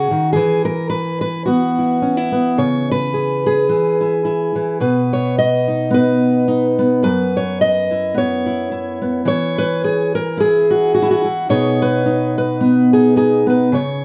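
A fingerpicked steel-string acoustic guitar sits up front with a warm, auditorium-sized tone, carrying this hopeful folk piece alone in B major at 108 BPM in 4/4 with a light swing on the eighth notes. Its harmony moves through Esus2, C#m7, B and F#7sus4, then shifts into an unharmonized stretch at 9.3 seconds before settling on B6 at 11.5 seconds. The guitar rings out in a large studio room with moderate reverb, and this short cut from a longer piece lasts 14.0 seconds.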